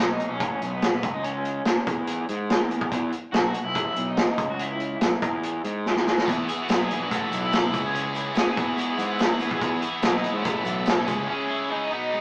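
Upbeat and carefree, this short indie rock excerpt opens with a twangy, slightly broken-up electric guitar melody through a small old amp with tremolo, over punchy fuzz bass and a gritty, saturated vintage drum kit, then after a drum fill a scooped high-gain guitar riff, a bright, compressed twelve-string electric guitar in the background and a very quiet, jingly tambourine join at 6.3 seconds before a break at 11.3 seconds, all in a rough rehearsal-room sound with stone-room reverb.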